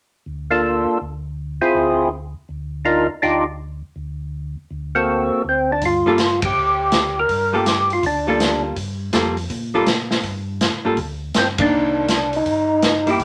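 A swung 4/4 at 162 BPM drives this smoky, soulful soul jazz organ trio fragment, cut from a longer piece. A round, mellow tonewheel organ carries the bass line low in the mix, colored by chorus vibrato and a slow rotary speaker, while a fat, lightly overdriven tonewheel organ with percussive third-harmonic attack and its own slow rotary sound takes the melody up front. The opening moves over Dm and Dmadd11 with a brief chordless break, then a vintage acoustic drum kit enters at 5.8 seconds with a punchy kick, medium-tuned snare, hi-hat and ride, its cymbals subdued and its top end rolled off. A clean, hollow-body archtop guitar joins as picked accompaniment as the harmony settles into G minor around Gm9 and later Cm9, and the band hits a couple of shared accents. The melody organ drops out at 8.6 seconds and returns at 11.4 seconds, all within a moderate studio reverb.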